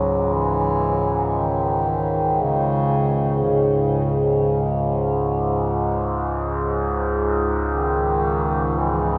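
A cavernous, wet sound fills this short excerpt of dark ambient drone, bathed in a huge reverb whose tail hangs for 9.3 seconds. Set in C# minor and moving in free time, the music feels unsettling and suspended for its full 9.2 seconds. Up front sits a resonant drone blending sawtooth and sine tones, its overtones shifting as it sustains with a slow attack and long release, thickened by chorus and its own reverb. Farther back, a mellow bass clarinet carries the melody in a classical style, sounding distant and roomy as it stays between C#3 and F#3. Shimmer reverb and a diffuse ambient delay blur the clarinet's line into the surrounding space, while the drone holds the low register beneath it.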